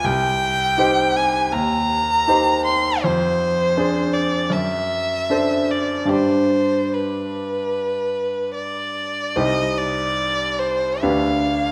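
The rhythm moves in a flexible rubato over a 4/4 metre, giving this romantic classical duo a yearning, elegiac character. A single bowed violin carries the melody throughout, its rich, smooth tone steady and even, shaded with vibrato and placed up front. A grand piano accompanies from the first moment to the last, its sound clear and natural and just as close, reaching from deep bass notes up into the middle register. The harmony leans through minor-key colours toward a dominant chord, then returns home as a new passage begins at 9.3 s, ending on a seventh chord at 11.0 s. A generous scoring-stage reverb with a two-second tail lends the pair a spacious, wet setting, and the recording is cut from a longer piece, stopping at 11.7 s.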